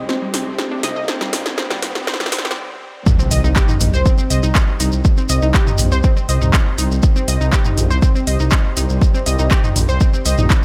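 Melodic techno with a dramatic, driving mood, cut from a longer piece, opens on a filtered build-up of airy supersaw, a very quiet moody pad, a round, warbling analog pluck arpeggio with chorus and delay, a rumbling detuned saw bass, an overdriven deep house kit with a punchy snare and metallic hats playing a fill, and a riser, then stops briefly before the drop at 3.1 seconds lands with an impact, a deep overdriven kick and a grainy shekere over the pumping bass and pluck.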